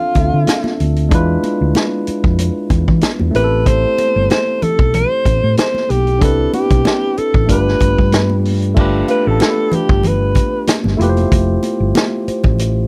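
This dry, close 1970s-style studio recording has a lush soul sound, excerpted from a longer piece, with a relaxed swung 16th-note feel in 4/4. An up-front alto saxophone carries the jazz-style solo melody with a mellow tone, gentle vibrato and a smooth top, playing until 10.7 seconds. A barky tine electric piano, lightly overdriven through a combo amp, supplies the accompaniment over chords moving from Dm9 through E7b9, Am7, Cmaj9 and G7 to Fmaj7. Beneath it, a hollow-body short-scale fingered electric bass sounds round, amped and dark, sitting close alongside a vintage acoustic drum kit with a punchy kick, a medium-tuned snare, dark cymbals and a warm, rolled-off top, and very quiet, bright, damped congas struck with hard hands. At 9.1 seconds a soft, bell-like celesta joins in the background, sweet and delicate but slightly out of tune.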